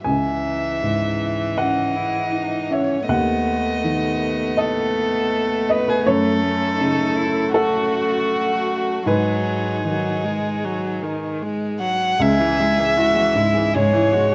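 A dark, intimate solo violin carries the longing, fragile melody of this rubato neoclassical piece, its airy sul tasto bowing and light vibrato set up front over a warm baby grand piano and a rich viola, while a cello with the same soft attack adds a second line from 1.6 seconds, the whole heard through moderate large-studio reverb and close, detailed microphones.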